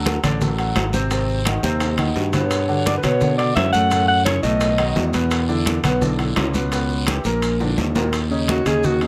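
A polished grand piano and a growly, up-front fingered electric bass open this sultry, sophisticated Afro-Cuban jazz excerpt at a brisk 171 BPM, joined at 0.1 s by damped hard-hand congas, tight high-tuned bongos, ringing metal-shell timbales, raspy guiro and grainy maracas, with drum fills near 1.6 s and 7.1 s, while a breathy, whispered alto saxophone with vibrato and scooped notes takes an intimate solo melody from 2.3 s and briefly returns near the close.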